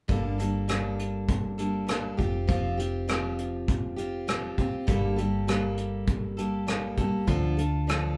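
A picked steel-string acoustic guitar sits up front with a bright, auditorium-sized tone, picking through Gmadd9, Fsus2 and Dm in G minor at 100 BPM in a dusty, reflective folk rock and heartland rock excerpt cut from a longer piece. Beneath it, a dark, round hollow-body short-scale electric bass, fingered and amped, holds the low end, while a soft brush kit adds a punchy kick, hi-hat and rim click with a distant, roomy feel. The band plays live in one small room, its moderate reverb giving the straight 4/4 groove an intimate, close-knit sound.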